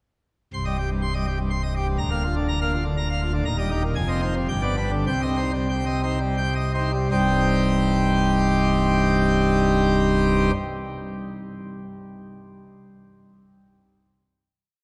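A stormy, dramatic classical organ toccata in C minor and 3/4: a solo pipe organ on full plenum with mixtures, brilliant baroque voicing and audible chiff sits up front, spinning rippling figuration against a second figure, across a range from C1 to C6. The tempo moves between 77 and 124 BPM and slows from 2.7 to 7.1 seconds as the harmony passes from C minor through Bb/D, Eb, Fm7 and G back to C minor. A final chord begins at 7.1 seconds, and the organ stops at 10.5 seconds, all within a dark production set in a wet cathedral reverb of 4.7 seconds.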